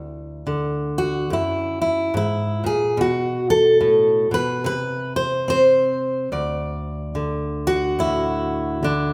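Hopeful and peaceful, this short folk passage, cut from a longer piece, features a single fingerpicked steel-string acoustic guitar playing solo throughout its 9.1 seconds. The guitar sits up front and has a warm, woody, full-bodied jumbo tone, with the character of old strings. Set in 4/4 with a gentle swing on the eighth notes, the playing ranges from a low D2 up to D5. The harmony moves from unaccompanied lines into F# at 1.3 seconds, then F#madd11, before settling onto D near the close. A generous recital-hall reverb surrounds the instrument, giving the sense of a church or concert hall.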